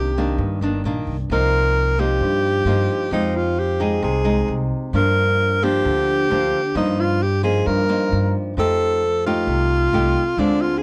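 A breathy alto saxophone with subtone and light vibrato sings a wistful jazz melody up front over fingerpicked nylon-string guitar, with audible finger squeak, and woody pizzicato upright bass in this intimate bossa nova fragment at 132 BPM in C minor, recorded close and dry as the chords move from Cm9 through Fm9 and Gm7 to F9.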